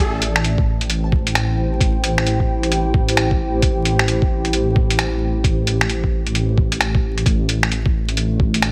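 A deep, rumbling detuned saw bass pumps under a moody, chorused analog pad on Am7 moving to D/A, while muffled, overdriven sampler-style finger snaps and hi-hat enter at 0.2 seconds and a thumpy pitched-down kick joins at 0.6 seconds, giving this rainy, melancholic future garage cut from a longer piece a swung 132 BPM pulse wrapped in vinyl crackle and light reverb.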